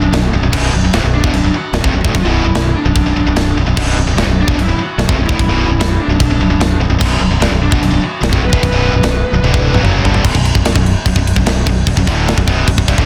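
A driving straight 4/4 at 148 BPM sets this heavy, aggressive metal excerpt in B minor, with a tight, up-front acoustic kit hammering kick, medium-tuned snare, toms, crash and china, and a punchy, growling fingered bass with overdrive grinding underneath. Three picked, distorted rhythm guitars stack the riff: two bright ones sit in the background, one of them high-gain, and a double-tracked overdriven one is very quiet. Meanwhile a dark lead guitar through a small cranked amp, with overdrive and digital delay, carries the melody until 9.8 s. A drum fill at 9.4 s leads into a new section at 10.2 s, all within a dense, heavily limited modern master in a small room.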